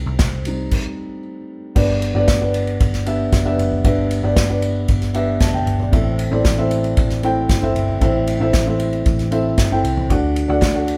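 Anthemic and uplifting, this piano-driven pop excerpt opens on a felt-muted upright piano, mellow and intimate with audible action noise, featured solo before a pause from 0.7 to 1.8 seconds. A round, foam-muted vintage electric bass sounds beneath it from the very start, and an airy unplugged drum kit with a punchy kick and bundle sticks enters at 0.2 seconds, the band sounding live in one lightly reverberant room as the chords move from G to Am to D. A crisp group handclap sits distant in the background, heard briefly at 0.2 and 10.6 seconds.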